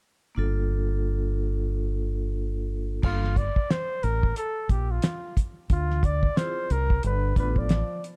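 The vibraphone opens this smoky, cool jazz-hop excerpt at 0.3 seconds, its medium hard mallets giving a metallic, ringing tone with a fast motor vibrato over a Gm9 chord, joined almost at once by a deep, round fingered electric bass that sits punchy and up front. At 90 BPM in G minor with a 16th-note swing, the groove settles in when the cloth-damped drum kit arrives at 3.0 seconds, dry and thuddy with a fat snare, tight kick, dark cymbals and a rolled-off top. The flugelhorn takes the melody from about the same moment, soft in attack with light vibrato and scooped notes in a jazz style. The harmony moves to Dm7b5 and then G7, and in the final second a close-miked, forceful trombone adds a short second line with scooped notes and a slapback echo. The production is dark and dry, with little reverb, keeping the bass and drums close beneath the horns.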